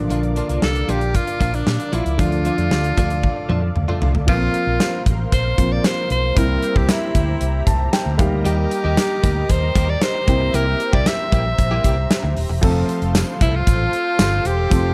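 This glossy, nostalgic 1980s-style pop passage, cut from a longer piece, opens with a warm grand piano, a lush detuned sawtooth pad washed in chorus, and a round, dark fingered electric bass, all sounding from the start in F major at 115 BPM. A gated 80s drum kit sits up front with a tight kick, medium-tuned snare, bright cymbals, hi-hat, tambourine and toms, while a bright, compressed clean electric guitar riff, recorded direct with ensemble chorus and slapback echo, stays in the background from 0.1 to 4.2 seconds and returns at 8.4 seconds. At 0.6 seconds an edgy, forceful alto saxophone takes the melody with scooped notes and its own slapback echo, carrying the lead through to the end. A drum fill closes the opening phrase, and the piano, intimate with audible action noise and short sustain, adds a fill of its own around 7.4 seconds. The chords move through Bb, Dm, Bbsus2, C7, Eb and C7 again before settling on F at 12.6 seconds, all within a small room ambience.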